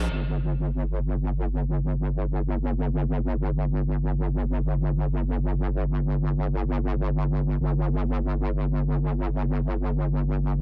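A bouncy, gritty house fragment in free time, carried entirely by a lone wobble bass that sits up front from 0.0 to 10.6 seconds around G1. Its heavy, detuned unison tone has a fast attack and a sustained, compressed body, roughened by overdrive and thickened with chorus. The sound is dry and dark, and the passage is cut from a longer piece.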